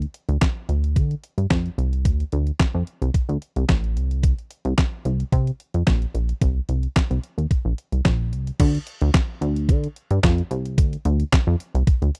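A plucky analog bass with a punchy, ring-modulated sawtooth bite and a detuned 8-bit drum machine with a thumpy kick, handclaps, hi-hat and crash (its samples re-recorded in a large room) open this funky, danceable early-eighties boogie funk cut at 110 BPM, both up front in a dry, close 1970s-style mix, with the music moving into a new section at 8.6 seconds.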